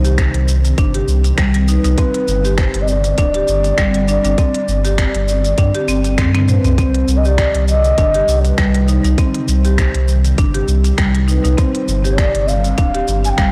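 A lightly swung sixteenth-note groove in 4/4 sets an earthy, warm downtempo mood, with an organic electronic drum kit of cabasa, finger snaps, crisp hi-hat and toms, its snare softly clipped, and a tight, tape-toned electronic kick that joins at 0.2 s, both re-recorded in a large room. A round, deep sine sub bass sits up front and pumps with sidechain compression, while a hard-mallet marimba with woody padauk bars plays bright, close-miked arpeggios through a digital delay. Above them, a breathy low ney carries the melody with a hollow, distant, straight tone, also echoing through a digital delay. An ethereal, airy pad of detuned unison layers with a noise layer holds mellow chords in the background, shimmering with ensemble chorus and its own reverb as it pumps in time. The harmony moves from Cm to Gsus4, then to Cmadd9 after a brief drum fill at 6.3 s, and returns to Gsus4. The whole excerpt has a light reverb and a blown-out, overdriven sound.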